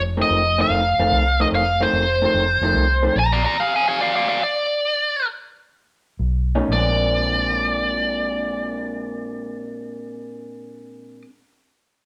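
A dark, round, foam-muted fingered bass opens this gritty, laid-back electric blues shuffle in Bb mixolydian at 118-148 BPM, as a bright, overdriven lead guitar bites in up front and a slightly broken-up, lo-fi guitar through a small old amp plays a compressed riff; the riff guitar stops at 3.2 seconds and the bass at 3.4 seconds while the tempo slows, and the bass returns at 6.2 seconds and the riff at 6.6 seconds, the band playing live in a stone room with moderate reverb on a passage cut from a longer piece.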